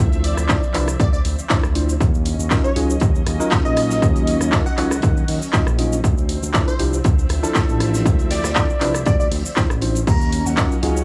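A late-night, hypnotic deep house groove at 119 BPM opens on bell-like electric piano stabs pumping with analog delay, a smooth, gliding sawtooth synth bass sitting up front, a dark, woody string section far in the background, and a dry acoustic kit with a high-tuned snare, soon joined by a punchy analog drum machine with claps, rim clicks, shaker and crash. An electronic kick lands at 0.5 seconds beneath a catchy, detuned unison lead with a filter pluck, moving notch and echo, as the chords shift between Dm9 and Ebm9. At 10.1 seconds a breathy, hollow jazz flute and a silky, vintage string machine with ensemble chorus enter, all captured with a gritty hardware character.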